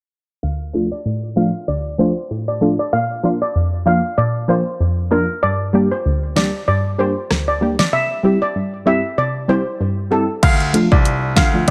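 Hypnotic and bouncy, this dancehall excerpt moves at 96 BPM in 4/4 with a light swing on the sixteenths, set in D minor over a Dm, Bb, Gm, C progression. A dark, shimmering steel pan carries the melody from the start, its lead line softened by a low-pass filter and trailed by delay. Beneath it, a punchy chord stab built from detuned sawtooth and pulse waves gives nasal, fast-attack plucks that decay, thickened with chorus and breathing with sidechain pumping. A filter sweep runs through the opening stretch until 10.4 seconds. An electronic pop drum kit arrives at 6.4 seconds with a punchy kick, fat snare, rim click, hi-hat and crash, sitting up front. At 10.4 seconds a clear, polished baby grand piano takes the low bass role as the harmony returns to Dm, all within a light reverb.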